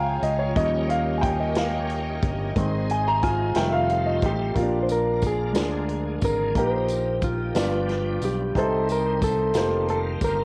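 This home recording on cassette carries a tape-coloured sound, with a moderate spring reverb lending the room a gentle bloom. It is a slow gospel piece in 6/8 with an uplifting, jubilant mood, cut from a longer performance. A clear, woody upright piano carries the accompaniment and plays a solo across the opening 4.6 seconds. It is supported by a round, dark fingered electric bass up front and a bright, shouting tonewheel organ holding sustained chords through a slow rotary speaker with chorus vibrato and audible key click. A soft-attack studio string section, bowed sul tasto, sits in the background with sustained chords during the first 4.5 seconds, while a swinging big-band drum kit with a punchy kick and medium-tuned snare plays hi-hat, kick and snare. A mellow, compressed electric guitar takes the melody from 3.2 s, and a jingly, saturated tambourine joins in the background from 4.9 s.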